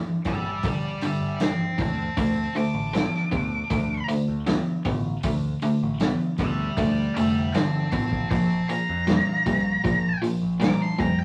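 Smoky and brooding, this short cut of blues rock and southern rock opens with a crunchy, double-tracked overdriven guitar riff up front, joined almost at once by a muffled, lo-fi vintage drum kit with a tight kick and medium-tuned snare, a dark octave-fuzz lead guitar carrying the melody, a growling overdriven picked bass, and a nasal parked-wah guitar tucked in the background as a second line, all heard in a rough rehearsal-room recording with tube saturation and moderate small-room reverb.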